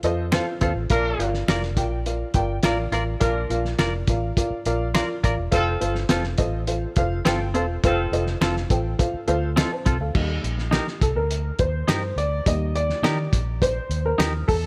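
Uptempo 1960s-style soul with a joyful, uplifting mood, moving at 104 BPM in a straight 4/4 and tuned slightly flat of standard pitch. A dark, woody upright piano with audible action noise and a worn, slightly detuned character sits up front alongside a round, foam-muted fingered electric bass and a cloth-damped drum kit whose fat snare, tight kick and dark cymbals give it a muffled, gritty, saturated lo-fi thud. From 0.3 seconds a bright, clean semi-hollow electric guitar adds compressed picked stabs, while dry finger snaps sit in the background. A clear horn section with light vibrato carries a second line from 0.9 to 8.2 seconds over chords moving from F to Bb and back to F. At 10.1 seconds the harmony shifts to Eb and the mellow upright piano steps forward with a solo, all under a light reverb in this short cut from a longer piece.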